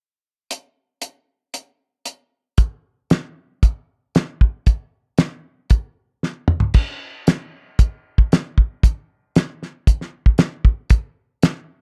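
A dry, close studio sound in the 1970s style, touched with light reverb, frames this driving, swaggering rock drum part at 115 BPM in a straight 4/4. The cloth-damped kit sits up front with a thuddy, rolled-off character: a fat snare, a tight kick, toms, hi-hat and dark crash cymbal, all in a small acoustic room. It plays from 0.5 to 11.6 seconds through three sections, with a drum fill at 6.2 seconds leading into the final stretch of this piece cut from a longer performance.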